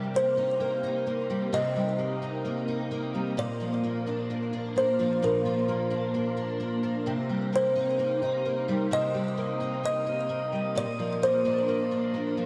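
A straight 4/4 pulse at a slow 65 BPM carries this haunting, melancholic dream pop excerpt in C minor, moving from Cm7 to Bb at 3.4 seconds. An up-front picked twelve-string acoustic guitar lays down shimmering, octave-doubled arpeggios with fresh strings, ensemble chorus and delay, and a woody, mellow kalimba enters at 0.2 seconds with a soft, ringing melody of its own, touched with delay. A long, wet shimmer reverb and a dark, warm production give the piece a hazy, suspended feel.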